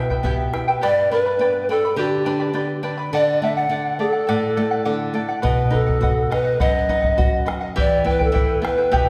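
A straight 2/4 pulse carries this wistful yet festive Andean folk fragment, where a mellow, airy wooden pan flute with vibrato and a soft attack sings the melody close to the ear over a shimmering, fingerpicked charango with double strings and a small, bright nylon-string guitar, while a deep, dry bombo sounds briefly at the start and returns up front from 5.4 s, the ensemble set in a recital hall's lingering reverb as the chords move from Em through G, D and B back to Em.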